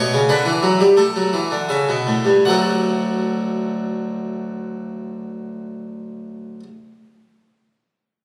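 Captured on a phone in a reverberant recital hall with a wet, club-like ambience, this short cut from an elegant, lively baroque-style two-part invention features a solo harpsichord, brilliant and airy with plucked octave strings and a French-style voice sitting up front, easing through a slowdown over the first 2.5 seconds as a rootless A7sus4 moves to A7 and settles on D at 2.5 seconds.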